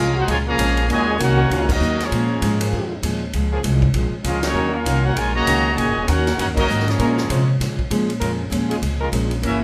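Sultry and swinging, this big band swing excerpt in Bb minor moves at 197 BPM, alternating between Bbm7 and Ebm7, with ensemble accents at 1.7, 4.4 and 6.5 seconds. A brilliant, tight trumpet section carries the melody up front with light vibrato, while a bright, close-miked trombone section sings a second line and another, clearer trombone section holds soft-attacked sustained chords. Underneath, a woody, thumpy pizzicato upright bass on gut strings stands forward, a picked steel-string acoustic guitar accompanies in the background, and a swinging drum kit with punchy kick and medium-tuned snare rings through a moderate large-studio reverb.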